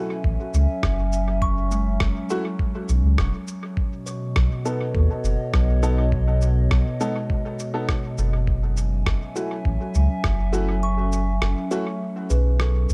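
A deep, round sub bass sits up front in this hazy, spacious ambient dub piece at 102 BPM in F# dorian, beneath a dark, warbling pad whose detuned, chorused chords carry a nostalgic lo-fi character. A bright, ringing kalimba with gritty 12-bit sampler texture plays arpeggios through dub echo, while a clear, woody upright piano adds short echoing stabs. A muffled, thumpy electronic kick and a compressed shaker with rim click hold a straight 4/4 pulse in studio reverb, and the kick drops out at 10.8 seconds.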